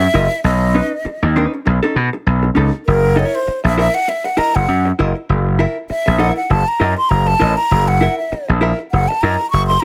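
A breathy concert flute leads this energetic, strutting funk cut, its tongued phrases carrying vibrato and lifted highs, and from 2.9 seconds it takes an expressive solo that runs to the end at 9.8 seconds. Beneath it, a gritty slap bass plays with a bright, punchy, overdriven tone, sitting direct and amped at the front of the mix. A vintage hollow-body jazz guitar supplies accompaniment with a dark, clean, picked sound that is compressed and up front. The groove moves in 4/4 with a lightly swung sixteenth-note feel, and the harmony shifts from B9 to F#6 as the solo begins. A small room ambience keeps the three players tight and present in this fragment of a longer piece.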